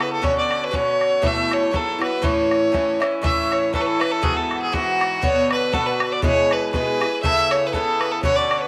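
A wet spring reverb gives this short, rollicking Celtic polka a roomy studio sheen as it moves at 120 BPM in 2/4 with a light swing in A major. Up front, a single bowed fiddle carries the cheerful melody with a biting, focused tone and light vibrato, while a picked Irish bouzouki supplies metallic, double-strung accompaniment. Beneath them, a boomy, compressed bodhran adds open, saturated percussion throughout the clip.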